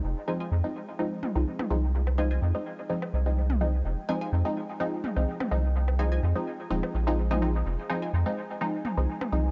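Dub techno in F minor at 126 BPM with a light swing, this nocturnal, hazy fragment from a longer piece sits on a single Fm7 chord, with a round, deep analog bass up front beneath muted, detuned sawtooth chord stabs carrying chorus, phaser and dub echo under a filter sweep. A second, brighter filtered stab riff with phaser and echo sits in the background from 0.3 to 8.1 seconds, while a very quiet, moody pad with slow attack and long release holds sustained chords high above. Overdriven electronic toms and woodblock with dub echo enter at 1.2 seconds, all in a dark, dry production.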